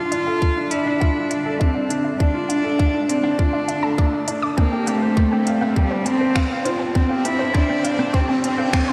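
Cinematic and melancholic, this short cut from a longer piano and strings electronica piece sits in a straight 4/4 and serves as a build-up from start to finish. A rich, up-front cello carries the melody with a soft, bowed sul tasto tone that feels pure and floating, touched by delay, while a felt-muted upright piano plays a mellow, intimate riff with short sustain, also echoed by delay. Behind them, a granular cloud pad holds blurred, evolving chords with chorus and sidechain pumping, and a punchy, detuned unison pluck adds background arpeggios from 0.1 seconds, shaped by a filter sweep, delay and the same pumping. An organic electronic kit of crisp hi-hats and finger snaps enters at 0.1 seconds, followed at 0.4 seconds by a tight, tape-tinged electronic kick placed up front, and a background riser climbs throughout. The whole mix is soaked in a lush hall reverb, giving it a dreamy, spacious glow.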